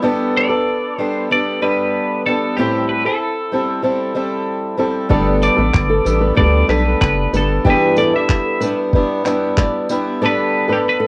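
A fingerpicked twelve-string acoustic guitar opens this sunny, heartfelt acoustic pop excerpt in G major, its shimmering, octave-doubled strings sitting up front with a boxy body and audible finger squeak. Almost at once, at 0.4 seconds, a bright, twangy twelve-string electric guitar takes the clean, picked melody over a steady 94 BPM in 4/4, moving through Gadd9, Am7 and Em7 chords. At 5.1 seconds the arrangement fills out: a dusty, sampler-style soul drum kit arrives up front with gritty, overdriven handclaps, tambourine and a thumpy kick. A deep, round analog bass with a nasal, dark tone and a very quiet, polished baby grand piano join at the same moment, though both drop away shortly after. A warm flamenco guitar plays fingerpicked arpeggios in the background until the end. The whole track carries the worn, warbling pitch drift of old cassette tape inside a moderate studio ambience.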